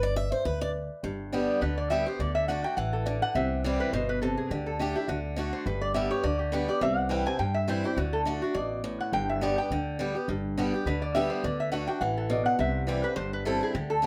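A bright, boxy picked acoustic guitar opens this joyful, lively bluegrass excerpt in G major at 208 BPM with a swing feel, while a woody, thumpy upright bass plucks its gut strings underneath. At 1.6 seconds a nasal, metallic lap resonator guitar takes the melody with fingerpicks and slide, touched by plate reverb. All three parts sit up front in a moderate studio room.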